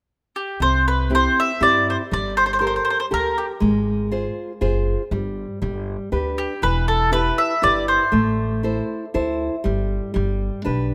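A lilting 3/4 sway at 119 BPM with a straight feel carries this sunny, romantic Italian folk serenade in C major, clearly lifted from a longer piece. A picked mandolin with doubled strings and a woody tone sings the melody up front, entering at 0.4 s and returning for a second phrase at 6.4 s. From 0.6 s a classical nylon-string guitar, fingerpicked on fresh strings, supplies the accompaniment. A pizzicato upright bass on gut strings adds a dark, thumpy low end. The harmony moves through C, Gmadd9 and Fm/Ab, then G, Em and Am, with brief chordless passages before landing on G. A moderate, lush hall reverb surrounds the instruments, though the overall mix has the rough character of a home demo.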